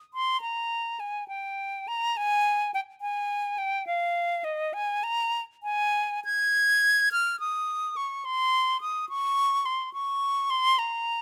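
Close, detailed microphones and light reverb give this recording an intimate, present sound, with the solo flute placed up front. It is a classical, baroque-style fantasia for unaccompanied concert flute, cut from a longer piece, with a flowing yet solemn mood. The flute plays alone from 0.1 to 11.2 seconds, its airy, bright tone shaped by vibrato and a soft attack. The line moves in 12/8 metre with an expressive rubato, ranging from Eb5 up to Ab6. Heard as a single unbroken section, the passage feels like a thoughtful, unhurried meditation.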